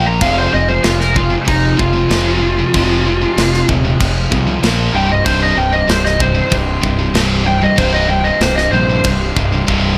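This heavy metal excerpt, cut from a longer piece, carries a dark, heavy mood in a straight 4/4 feel. A high-gain lead guitar, distorted and treated with tape echo, takes the melody up front from the start, soloing until 9.0 seconds over a dense wall of riffing from three rhythm guitars sitting in the background: a bright, double-tracked and compressed distorted guitar, a scooped high-gain guitar, and a sludgy, darker overdriven one. Beneath them, a growling fingered electric bass with overdrive sits prominently in the mix, while a tight, acoustic metal drum kit with bright cymbals, a medium-tuned snare and a tight kick drives the groove. A very quiet pipe organ on a full principal chorus with baroque voicing holds sustained chords underneath, adding a faint churchly depth as the harmony moves from F minor through B-flat and C power chords to C minor. A drum fill at 9.7 seconds closes the passage, all set in a light reverb.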